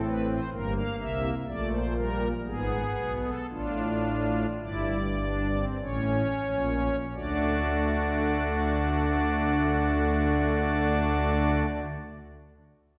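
A pipe organ on its strings celeste stops carries this whole fragment, its shimmering, soft tone shaped in a romantic voicing and set up front, spanning G1 to F5. The music is a baroque-style three-part fugue in 3/4, contemplative yet driving, moving between 43 and 65 BPM with a straight feel and slowing down through the opening 7.2 seconds. The harmony opens on A minor and passes through E diminished over G, G-sharp minor and D minor over A before arriving on A major and then D at 7.2 seconds, where a second section begins. The organ sounds within a wet concert hall, heard from further back in the room, with reverb that lingers for about 1.8 seconds. Cut from a longer piece, the fragment runs to 11.7 seconds.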